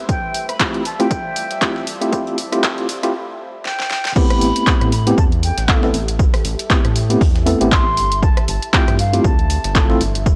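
A punchy, overdriven electronic kick drives this late-night deep house excerpt in A minor at 118 BPM, joined by a fat-snared house kit with claps, rim clicks and crash, a gritty, pitched-up breakbeat kit in the background, worn tremolo tine electric piano stabs up front, a distant, hollow silver flute melody and a moody, detuned ambient pad, while a round analog bass arrives at 4.4 s just after a filter-swept build-up, break and drum fill give way to the drop at 4.2 s, all on a dry, saturated cassette-tape sound.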